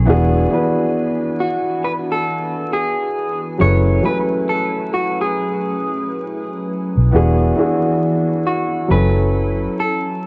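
Worn, warbling cassette tape with vinyl crackle, a dulled top end and a moderate plate reverb frame this reflective, nostalgic lo-fi hip hop clip, which swings gently over chords moving between E9 and F#m11. A dark, woody upright piano and a round, foam-muted fingered electric bass sit up front from the start, while a hollow, flute-like pad with ensemble chorus holds soft, sustained chords behind them. At 1.4 s a slightly broken-up electric guitar through a small old amp enters with a picked melody carried by tape echo, and the bass drops out at 9.7 s.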